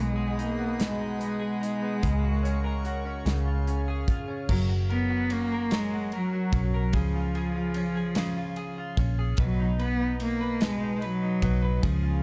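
Romantic and heartfelt, this short excerpt from a six-eight pop ballad in F# major moves at a slow 49 BPM, with a bowed cello singing the melody up front in a focused, smooth voice with vibrato. A bright, twangy clean electric guitar, recorded direct and double-tracked, carries the accompaniment over a round, foam-muted fingered electric bass, while an airy, breathy pad with chorus holds sustained chords until 4.5 s. An acoustic drum kit with a tight kick and medium-tuned snare enters at 0.4 s, and the dark, small-room production moves through chords such as B6, F#/C#, C# and F#.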